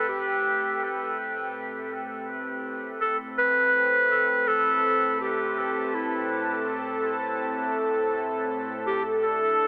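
A clear, classical-style solo clarinet sits up front with dub echo trailing its melody, joined by a smooth, detuned sawtooth analog pad, also up front, that holds sustained chords with a soft attack and chorus. The hazy, spacious ambient mood rests on a single Am7 chord until the harmony drops out at 8.9 seconds. The whole short excerpt is bathed in a huge, wet reverb and filtered through a telephone-like sound.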